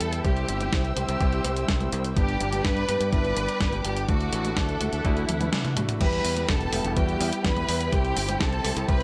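A straight italo disco groove, cut from a longer piece, is driven by a thumpy electronic kick from 0.2 seconds and an up-front, sampler-style drum machine with crash, hi-hat, a medium-tuned snare and toms, under a bright, growly fingered electric bass. A lush bowed violin section carries the melodramatic melody with expressive vibrato and a touch of delay, while a veiled, con sordino string section holds sustained chords in the background and an intimate grand piano, its action noise audible, adds stabs through a C, G and Dadd9 progression that moves to E minor and then back to C. A drum fill from 5.3 seconds, with a band accent at 5.5, launches a new section at 6.0, all set in a light reverb that keeps the track danceable.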